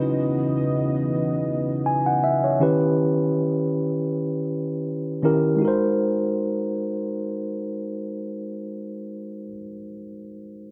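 Longing and late-night in mood, this short R&B fragment from a longer piece rests on a mellow, clean tine electric piano that plays up-front accompaniment from 0.0 to 10.7 s over a light reverb. A deep, moody ambient pad with a warbling, detuned, vintage character, chorus and its own reverb shades the opening, its slow attack and long release sustaining dark chords only until 2.6 s. The swung harmony moves through minor eleventh and altered dominant colours before settling on a dominant chord at 5.6 s.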